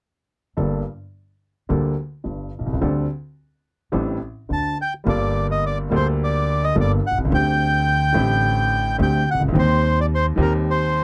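Dramatic and sultry, this short tango excerpt in G minor moves at 107 BPM in 4/4 with a rubato feel, slightly tuned at A4 = 439 Hz. An upright piano, vintage and woody with a short sustain, sits up front with the accompaniment from 0.6 seconds, alongside a pizzicato upright bass whose steel strings give a woody, warm, acoustic low end. The harmony shifts between Gmadd9 and D7sus4 before settling on Cm/Eb near the close. At 4.5 seconds a reedy, dark bandoneon enters with the melody, smooth and forward in the mix, just ahead of the second section at 5.1 seconds. Close, detailed microphones and light reverb keep the small ensemble intimate and present.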